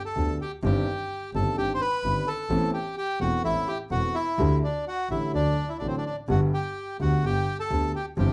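Tango in G major at 127 BPM in 4/4, played with a rubato feel, this short excerpt from a longer piece carries a dramatic, tense mood. A reedy, dark bandoneon carries the melody up front from the very start, set in plate reverb, with a dark concert grand piano and a bowed double bass joining at 0.2 seconds. The piano accompaniment is mellow and intimate with a vintage character, deep bass and audible action noise. The double bass, a single close player, has a biting, nasal, earthy tone with light vibrato and an airy bow. The harmony moves from Gadd9 through Cmadd9/G and Amadd9 to Dsus4 and D before settling on G, heard from further back in a club room with a short, wet ambience.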